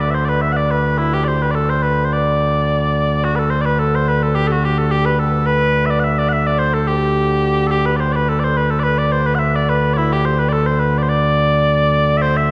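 Celtic folk with a bright, cheerful mood, moving at a brisk 214 BPM in 4/4 with a light swing on the eighth notes. Mellow small bagpipes play alone and up front throughout, their sweet, continuous tone touched with vibrato and ranging from D2 up to F#5. A recital hall reverb gives the sound a wet, distant bloom, as if heard from further back in the room, in this short passage cut from a longer piece.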